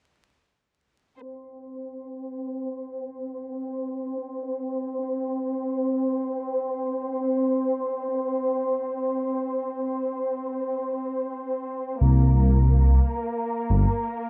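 Brooding and cinematic, this trip hop excerpt unfolds in free time, cut from a longer piece. A warm symphonic violin section carries it from 1.2 s to 14.3 s, holding lush, bowed chords between Bb3 and C5 with smooth, even vibrato, sitting up front under a low-pass filter that sweeps across its whole span. Near the close, at 12.0 s, a dark detuned saw bass arrives between G1 and C2, deep and rumbling with a beating, tube-saturated edge and a fast attack, sustaining until 13.9 s. Vinyl crackle and a light studio reverb frame the sound, and the overall mix is also softened by a low-pass filter.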